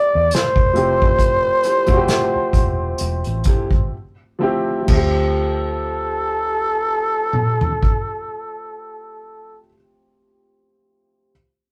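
A lightly swung sixteenth-note groove in 4/4 at 61-70 BPM, slowing through the opening and pausing for a break at 3.9 seconds, carries this soulful, sultry neo-soul R&B excerpt in D minor, where a raspy, growling bucket-muted trumpet with vibrato and scooped notes sings the melody up front over a short-sustained concert grand piano, a round, foam-muted vintage fingered bass, an airy acoustic drum kit played with bundle sticks and dark cymbals, and a slightly broken-up, lo-fi electric guitar line tucked in the background from 1.6 seconds, all captured in a rough rehearsal room with light reverb.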